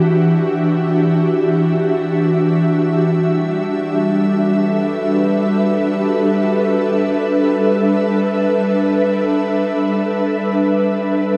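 An ethereal, airy synth pad plays alone and up front through this serene, spacious ambient excerpt, its mellow, detuned sawtooth and triangle layers and noise layer blooming slowly into sustained Em7 and then G6 chords from 2.9 s, softened by ensemble chorus and tape echo and drifting through a vast, echoing reverb.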